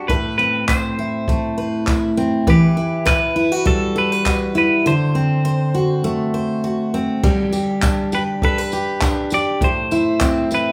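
Easy-going and carefree, this acoustic pop cut from a longer piece moves at 101 BPM in G major with a light sixteenth-note swing. A bright, full-bodied picked jumbo steel-string acoustic guitar sits up front carrying the accompaniment, while a clean, twangy, compressed electric guitar plays the melody. A brushed jazz drum kit with dark cymbals, a punchy kick and handclaps joins at 0.1 s, and a jingly tambourine sits in the background, all bathed in a large studio reverb that gives the feel of a band playing live in one room, with a break from 4.9 to 7.2 s as the chords shift from Amadd9 and Emadd9 through D7 to G.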